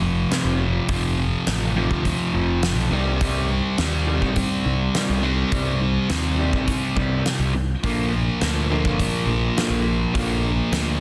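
Dark and angsty, this short cut from a longer piece is quiet-loud alternative rock at 104 BPM in a straight 4/4, moving from F to C minor at 2.9 seconds and on to B-flat at 7.8 seconds. A double-tracked fuzz guitar sits up front with a compressed, distorted riff that stays warm despite the grit. Underneath, an electric guitar through a small old amp plays lo-fi, slightly broken-up arpeggios colored by a vibrato effect, while a picked electric bass adds a growly, punchy low end. A huge arena drum kit comes in at 0.3 seconds with a fat snare, punchy kick and hi-hat that carry a big-room acoustic sound. Light reverb and small room ambience surround the band, and the master is dense and heavily limited in a modern style.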